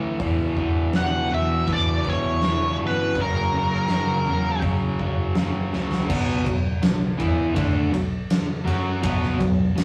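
Blues rock in a southern rock vein, this gritty, heavy excerpt moves at 81 BPM in B minor, with a bright, double-tracked distorted guitar riff up front over a round, foam-muted picked bass and a big-room acoustic drum kit with a fat snare and punchy kick. From 1.0 to 4.6 seconds, a dark octave-fuzz lead guitar with wah carries the melody while a very quiet, bluesy overdriven guitar traces a second line beneath it. A drum fill at 5.7 seconds leads into a B minor section, all captured with the rough, tube-saturated feel of a rehearsal room and moderate studio reverb.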